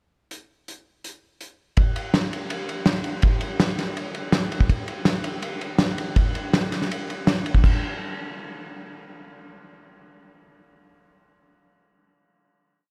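A straight 4/4 rock pulse at 164 BPM drives this short, complete piece, carried entirely by a loose indie drum kit that enters at 0.3 seconds with a pickup bar. The mood is intricate and playful, with the kit breaking its groove as it moves through the main section that begins at 1.8 seconds. Kick drum, snare, hi-hat, ride and crash cymbals make up the acoustic kit, which sits up front with a dark, smooth character, a tight kick, a medium-tuned snare and a rolled-off top. A closing hit arrives at 7.6 seconds, the drums stop at 7.7 seconds, and the tail rings on toward 10.6 seconds. A huge ambient reverb hangs over the recording, giving the brief performance a long, cavernous decay.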